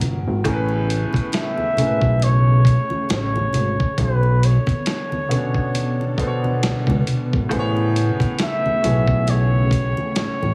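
Heavily compressed with a radio-like sound in a small room, this introspective, late-night neo-soul and R&B excerpt at 68 BPM with a swung sixteenth feel pairs a woody upright piano, a silky string machine with ensemble chorus in the background, a fat, saturated analog bass up front, a gritty sampler-style drum kit with a thumpy kick, and low-tuned congas, while a breathy flugelhorn carries the melody with scooped notes from 1.3 seconds over Amaj9 and Bm9 chords.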